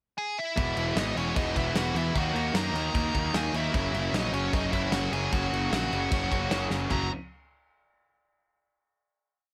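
Punk rock with an upbeat, rebellious spirit, this short, complete piece opens with a nasal lead guitar through a parked wah, playing a pickup alone from 0.2 s. At 0.6 s the band crashes in: a cranked stack guitar pounds driving eighth-note power chords, a scooped, compressed distorted electric guitar adds driving eighth-note barre chords, and a very quiet, double-tracked high-gain guitar rings out chords beneath them. A growly, punchy fuzz bass drives eighth notes underneath, while a loose indie drum kit in a small room keeps a fast punk groove with a punchy kick, a medium-tuned snare, toms, and crash and china cymbals. Up front, the dark, overdriven lead repeats hook phrases built from short motifs, partly doubled in octaves. A drum fill at 6.7 s leads into a final chord, and the dry sound keeps the energy raw and immediate.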